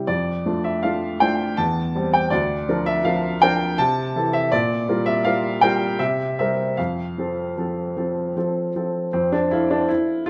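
A baby grand piano opens at once, alone, playing a cheerful and elegant classical-period sonatina in triple metre with a flexible, rubato feel. Its tone is warm and open, set up front, and its range spans from D2 in the bass to A5 above. The harmony steps gracefully from D minor over F through C, B-flat and A minor chords to a G minor seventh, then a C7 leads home to F at 6.8 seconds. A new section begins at 9.1 seconds, and the piano plays through to the end at 10.3 seconds, as this short passage is cut from a longer piece. Close, detailed microphones capture the instrument with a moderate recital-hall reverb around it, though lossy compression artefacts colour the sound.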